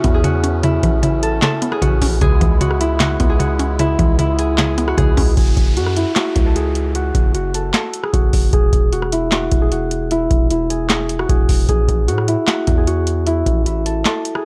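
Eerie and brooding, this half-time trap hip hop piece at 152 BPM sets a bright, ringing concert harp melody, softened by a low-pass filter and tape echo, over a booming analog drum machine of deep kick, tonal snare, handclaps, rim click and metallic hi-hats up front, and a punchy, saturated 808-style bass, while a woody, chorused mallet-like synth pluck and a reedy, shimmering musette accordion holding chords fill the opening 5.4 seconds before a downlifter passes through from 5.4 to 8.5 seconds, all in a dry, gritty hardware sound.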